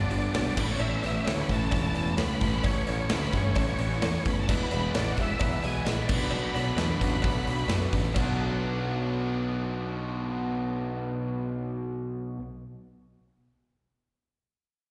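A straight 4/4 groove at 130 BPM drives this swaggering classic rock excerpt in B minor: a growling, round picked bass and a punchy big rock kit with bright cymbals sit up front, joined by a very quiet, dry, metallic cowbell, until the drums drop out at 8.3 s, while a gritty, thick tonewheel organ with slow rotary speaker, chorus vibrato and slapback echo carries the melody until 7.7 s, two overdriven guitars, one crunchy and one bright, grind out a riff in the background, and a clear, woody upright piano and a dark picked steel-string acoustic guitar with audible finger squeak add very quiet accompaniment, the sound captured as a live gig through the venue's PA with recital hall reverb.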